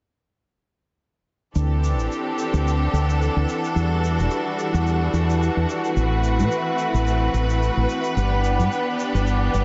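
A moderate scoring-stage reverb gives this sunset chillout excerpt a big arena sound with a dark, rolled-off top, as a rich, bowed string section with light vibrato sustains chords up front over a round, woody fretless electric bass at 109 BPM with a gentle 16th-note swing. A soft, brushed shaker sits in the background from 1.6 seconds, and at 2.6 seconds an airy, breathy wind-like tuned noise texture drifts in behind with its own reverb. The smooth, warm mood rests on a slow chord progression moving from D9sus4 through Em11 and Am69 to G6.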